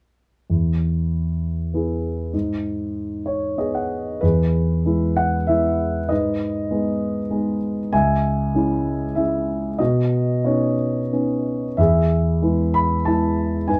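Lyrical classical solo piano in E major, sunny and warm, moving in a rubato 3/4 at roughly 89-102 BPM: a dark, mellow concert grand with deep bass sits up front in light reverb, adding a short fill at 2.9 s before a new section opens at 4.2 s and wanders through E, G#m, C#m and Badd9 before settling back on E, in this portion of a longer piece.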